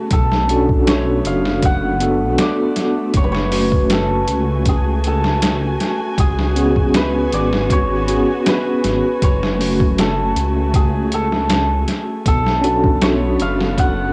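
A mellow, shimmering cimbalom melody with tape echo and a cassette tint opens this dark, hypnotic trip hop excerpt at 79 BPM in F# minor, alongside a clean tine electric piano with tremolo and tape echo and distant, bowed chamber strings with vibrato, before a deep, rumbling detuned saw bass with tube saturation and a muffled, pitched-down sampler-style drum kit with a thumpy kick and overdrive arrive up front at 0.1 seconds over chords moving from Bm9 through F#madd9 and C#7sus4, captured as a home cassette recording with light reverb.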